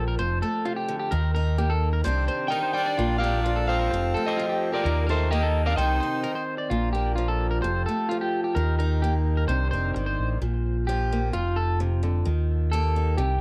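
This joyful highlife excerpt opens with a boxy, picked steel-string acoustic guitar playing accompaniment, a round, dark fingered electric bass up front, and a slightly broken-up electric guitar playing picked arpeggios through tape echo. At 2.5 seconds a twangy, fingered electric guitar, also at the edge of break-up, takes the melody, with a gritty tenor saxophone adding a forceful second line underneath, marked by vibrato. A reedy, overdriven combo organ holds sustained chords in the background. The harmony cycles through add9 chords before giving way to bare power chords at 10.4 seconds, where a clean electric guitar solo joins the band until the cut at 13.4 seconds. A light reverb gives the band a cheerful, lively sense of space.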